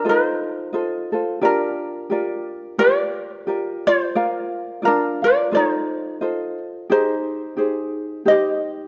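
Two ukuleles begin together at 0.0 s in a sunny, dreamy Hawaiian passage at a relaxed 88 BPM in 4/4 with a gentle swing on the eighth notes. One ukulele carries the melody, fingerpicked with a light, warm acoustic tone and sitting slightly louder. The other ukulele plays the accompaniment, thumb-plucked and just as light. Both sit up front in the mix. The harmony moves from F7 through Gm7 and Bb/F back to F7, then settles on a hazy Abmaj7 that deepens the dreamy mood. A moderate recital-hall reverb gives the pair an airy sense of space through this brief passage, which is cut from a longer piece and ends at 8.9 s.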